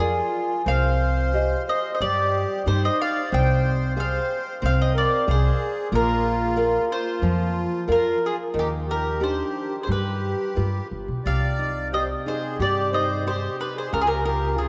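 A fado-style ballad excerpt at 91 BPM in 4/4, played with a rubato feel and full of longing and passion, set in a vast, echoing space with a cathedral-like reverb tail. A woody, double-strung mandolin carries the picked melody up front with a slapback echo, while a reedy, sweet accordion with light tremolo tuning adds an airy second line and a bright, full-bodied nylon-string guitar fingerpicks the accompaniment. A dark, thumpy upright bass on gut strings plays pizzicato up front, and the harmony moves from Bb through Cm and Ebmaj7 to G7 before shifting to a new passage at 11.2 seconds on Cmadd9, touching Db just before the cut.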